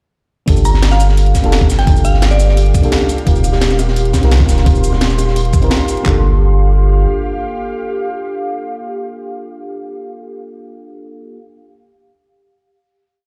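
Heard in a large reverberant room, this short, melancholic and soulful liquid drum and bass piece in G minor at 172 BPM drops at 0.5 seconds into a mix of three layered drum kits: a gritty, pitched-up sampler kit with a thumpy two-step kick and claps, an overdriven electronic kit with a cracking snare, bright hats and cabasa, and a dark, looped acoustic breakbeat. Underneath sit long gliding notes from a round, up-front sine sub bass, while a chorused FM electric piano plays mellow, rootless held chords with syncopated pushes. An ethereal, detuned pad pumps with sidechain compression, and a glassy synth bell adds brief answering phrases through tape echo, with light, high-tuned bongos in the background. The drums stop at 6.1 seconds, leaving the sub bass to fade out by 7.1 seconds while the keys and pad ring out a final Gm7 chord.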